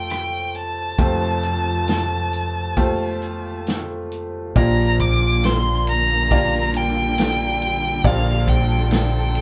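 A rich, smooth violin sings the melody up front over a bright, woody upright piano that sounds slightly detuned, with a round, punchy fretless bass and a natural country drum kit of punchy kick, medium-tuned snare, rim click, hi-hat and ride, all at an unhurried 68 BPM in Bb major. This hopeful, intimate acoustic folk-pop ballad moves from an Fadd9 chord to Bb6 at 4.6 seconds, where a dark, expressive chamber string section enters with sustained bowed chords. The players sit in a lively studio room heard from further back, giving this short cut from a longer piece an airy, close-knit feel.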